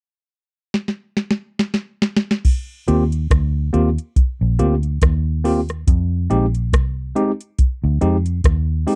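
A dry, close recording with the feel of a 1970s studio opens this short cut from a longer lovers rock reggae piece, romantic and sweet at an easy 70 BPM in 4/4 with a light swing on the sixteenths in Eb major. A soft vintage rhythm box starts at 0.7 seconds with a fill that runs to 2.5 seconds, its analog sound marked by a deep kick, a tonal snare, metallic hats, rim clicks and a crash, all given an overdriven edge and placed up front. At 2.9 seconds a tine electric piano and a muted fingered electric bass enter together. The piano sits in a clean, direct middle register, while the bass is dark, round and foam-muted, with an amped tone placed up front as the low foundation. The harmony moves from an Eb6 chord to Fm9 at 5.9 seconds, and the groove carries on until the cut ends.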